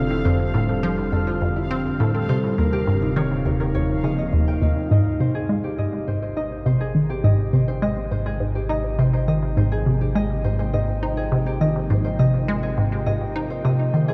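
This is ambient, sequencer-driven space music with an expansive, cosmic mood, cut from a longer piece and set in a straight, steady four-four pulse. Up front, a juicy, squelchy blip pluck with a phaser and analog delay repeats a riff in the lower and middle registers, while a bright, thumb-plucked concert harp rings out arpeggios through a low-pass filter and its own analog delay. Beneath them, a sweeping, wave-folded pad sustains evolving chords with chorus and phaser, and a round, nasal analog bass holds down the deep end. Over the opening chords of Fmaj7 and Eb7, a bubbling texture with random filter steps murmurs quietly in the background until 4.9 s, when it stops, the harmony settles on Abmaj7 and the pad begins a fade-in. The whole piece sits in a vast, echoing cathedral reverb that gives it a drifting, spacious glow.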